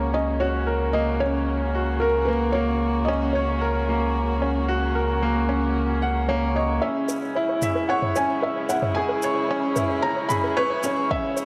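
A straight 4/4 pulse at 112 BPM carries this melancholic, intimate piano and strings electronica fragment, set in C# dorian and tuned to A4 = 439 Hz. A bright, brilliant concert grand piano sits up front with a riff touched by tape echo, while a felt-muted upright piano sings the melody with a mellow, soft tone, short sustain and audible action noise, also through tape echo. Beneath them a dark string quartet, one player per line, holds bowed chords with vibrato and portamento, low-pass filtered and pumping to a sidechain, as a round analog bass anchors C#2 over the opening F#/C# harmony until it stops at 6.8 seconds. At that point the harmony turns to C#m and a build-up begins: filter sweeps move across the strings and a soft, gentle pluck playing arpeggios in the background, with chorus, tape echo and sidechain pumping. Electronic shaker and toms, each low-pass filtered and tape-colored, join at 7.1 seconds, and a deep, layered electronic kick lands at 11.1 seconds, all within a lush hall reverb blended with small room ambience.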